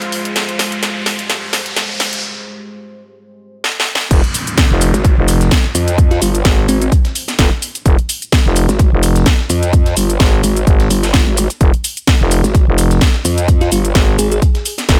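A dry, punchy bass house excerpt in F minor at 128 BPM with a swung, aggressive bounce, opening as a build-up where a deep, moody pad and an airy, breathy pad pump under a cracking house drum kit and a background riser and downlifter, before the drop at 4.1 seconds brings in a punchy electronic kick up front, a very quiet, gritty sampler-style kit and a thick growling FM bass, joined at 4.9 seconds by a saturated, wobbling growl bass, with brief sparkling bell-like FM electric piano phrases glinting through on chorus and delay.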